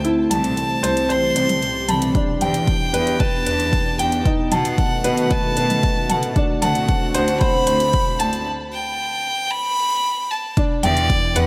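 An up-front, airy-bowed solo violin carries a moving, melancholic melody over a clear, woody upright piano riff in this 114 BPM piano-and-strings electronica fragment in E minor. A thick, detuned sawtooth pad with chorus holds sustained chords and pumps alongside a focused, bowed cello section on bass, while a deep house kit with metallic hats and an overdriven, punchy electronic kick arriving at 2.1 seconds drive the build-up. A filter sweep on an analog synth pad runs through the passage over Am7/C, Em7, B7 and D7 until a break at 8.5 seconds, all set in a light small-room reverb.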